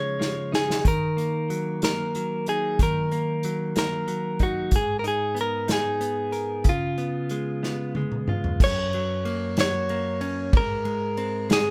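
An unplugged drum kit played with bundle sticks sits up front in a small room, its dark cymbals, tight kick and medium-tuned snare carrying this romantic, swaying six-eight pop ballad, with a drum fill leading into a new section at 8.6 s. Two clean, compressed electric guitars recorded direct share the foreground, one picking a warm melody while the other plays the picked accompaniment beneath it. The chords move from C#add9 through D#m and G#madd9 to C#7, then settle on Gb and Ab under light reverb, giving the feel of a band playing live together in one room.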